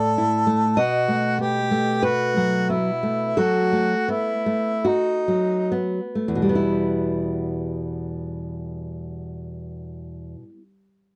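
A roomy, classical-style harmonica melody with light vibrato and a fingerpicked nylon-string guitar begin together in this yearning, solemn romantic duo in E minor, moving in a rubato 4/4 at 33-52 BPM and slowing over A5 and B7 chords through the first 6.6 seconds; the harmonica ends at 5.7 seconds while the warm, fresh-stringed guitar carries on alone, settling on Em before stopping at 10.6 seconds, heard in a dry, close 1970s-style studio sound with light reverb.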